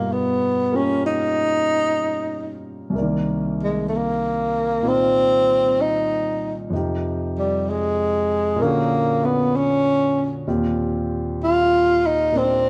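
A breathy tenor saxophone and a vintage-toned concert grand piano begin together in this intimate, tender swung jazz ballad fragment, the saxophone carrying the solo melody up front with vibrato, soft attacks and scooped notes while the smooth piano accompanies from its deep bass, its action noise audible, as the band plays live in one stone room with moderate reverb over changes that settle on Eb6.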